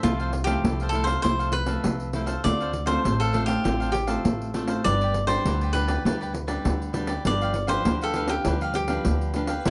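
A festive, lively samba and choro groove opens at 100 BPM in a straight 4/4, with a crisp, up-front picked cavaquinho carrying the melody over a second, brighter cavaquinho picking out an accompaniment, a small fingerpicked nylon-string guitar, and a woody, thumpy pizzicato upright bass sitting prominently underneath. A jingly pandeiro played with soft hands keeps time throughout, and the harmony moves from Fmaj7/C through Dm7 to G and G7 in a moderate studio ambience, the clip cut from a longer piece at 9.7 seconds.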